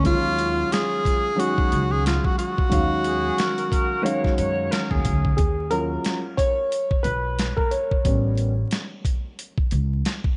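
A breathy, subtoned tenor saxophone with scooped notes, vibrato and a diffuse ambient delay carries the mellow, cool melody of this swung jazz-hop cut at 90 BPM in Eb minor, joined at 3.0 s by a distant, pure silver flute, over a dark grand piano with analog chorus that takes a solo from 5.4 s, a woody, growly pizzicato upright bass, and a gritty, compressed boom bap drum kit with a thumpy kick, set in a dreamy, reverb-soaked mix with vinyl crackle.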